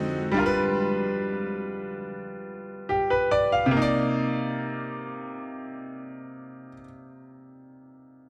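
A clear concert grand piano opens this brief R&B fragment, cut from a longer piece, setting a late-night, moody tone in C minor at 71 BPM in a straight 4/4. The piano is the only part and plays accompaniment throughout, ranging from C3 up to F5 with a deep bass, a slightly boxy character and a short sustain. A G7 chord sounds at 0.4 seconds, and the harmony moves to Cm9 at 3.7 seconds, where the second section begins. The piano sits up front in a light reverb, and the recording has a dense, heavily limited modern master.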